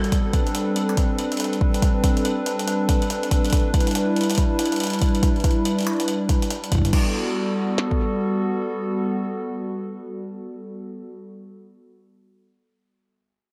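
A lush hall reverb gives this short cut from a longer IDM piece a big arena sound, its playful yet wistful mood set in G major at 141 BPM with a 62% swing on the 16ths. A hollow, flute-like pad sits up front, holding sustained chords between G3 and B4 with a slow attack, long release and chorus, its detuned square, triangle and sine tones giving it a soft, dark glow. Alongside it, an up-front glitchy electronic kit drives the groove with a deep kick and a tiny snare until 8.0 seconds. A quieter jungle sampler-style kit adds gritty, compressed, pitched-up crash cymbal and hi-hat, re-recorded in a large room, before stopping at 7.0 seconds. The harmony moves from Am11 to Em7, then opens onto Gmaj9 at 6.9 seconds, and once the drums fall away the pad carries on to the end.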